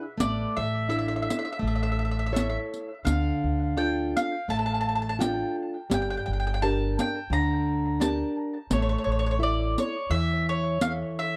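A straight 4/4 feel carries this short cut from an Italian folk serenade, wistful and passionate in mood. Up front, a bright, full-bodied nylon-string guitar is fingerpicked in classical style with audible finger squeak. A woody, picked mandolin with doubled strings sings the melody through an analog delay, while a dark pizzicato upright bass with steel strings anchors the low end and a close, dry riq adds its jingles. The group sits in light reverb over a progression moving from Asus4 and A through Dm and Gm back to A.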